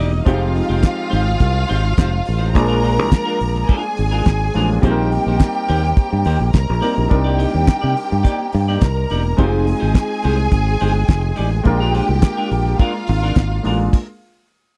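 A punchy, growly fingered electric bass and a damped 70s drum kit with a fat snare and dark cymbals drive this danceable, glamorous disco excerpt at 105 BPM, with a lush, bowed string section carrying the second line over a clean, twangy electric guitar, an intimate baby grand piano with audible action noise, hollow group handclaps in the background, and chords moving from Fm9 through Bb7, Eb6/Bb and Cm9 in a dry, close 1970s-style studio sound before everything stops at 13.9 seconds.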